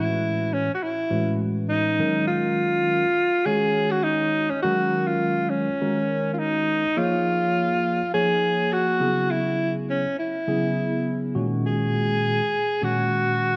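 A clear alto saxophone and a tine electric piano start together at 0.0 s in this slick, funky jazz excerpt, set at 102 BPM in a straight 4/4. The saxophone carries the melody up front, its subtone voice shaped by light vibrato, soft attacks and scooped notes that give it a vintage jazz character. Beneath it, the clean electric piano supplies the accompaniment through its built-in speakers, treated with analog chorus and also placed close to the listener. The harmony moves from Amaj7 to Ebm11, then through Dbadd9, E69/C# and Gb69/Bb, as a repeated section returns at 7.0 s. A moderate large-studio reverb and a dark, warm production frame both parts until they stop together at 13.6 s.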